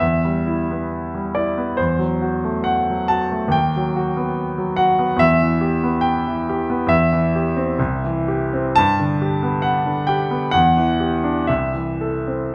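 A clear, polished concert grand piano, up front with a deep bass and a present tone captured by close, detailed microphones, plays a hopeful, lyrical romantic character piece in E minor and 2/4, moving with a flexible rubato between 53 and 74 BPM and spanning C2 to A5 across chords such as Em, F#m7b5/E, B/D#, C and G before settling on Am/C near 11.5 seconds, all heard through the moderate reverb of a recital hall in this brief fragment of a longer work.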